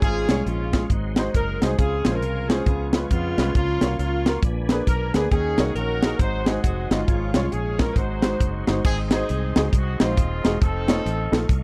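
A tight, dry funk drum kit with a high-tuned snare drives a swung 4/4 at 136 BPM alongside a dark, round, foam-muted fingered electric bass, both up front, while a woody upright piano comps through rich Db-centred changes. A distant, loose horn section shares the melody with a clear, softly attacked alto saxophone with vibrato, which sits in the background until it drops out at 8.7 s. A very quiet mellow French horn section and a clicky tonewheel organ on fast rotary add sustained chords beneath this jubilant, hopeful uptempo gospel passage, cut from a longer piece, in a close, 1970s-style studio sound.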